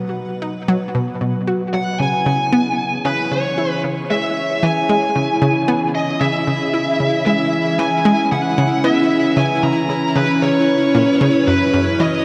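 A dark, distorted bluesy lead guitar carries the melody from 1.7 s over a round, detuned analog pluck riff with tape echo, while a morphing wavetable pad fades in with sustained chords through a phaser and a pulsing, tempo-synced gated texture sits in the background, all set in a vast cathedral reverb that gives this mysterious, hypnotic fragment of sequencer-driven ambient space music its echoing depth.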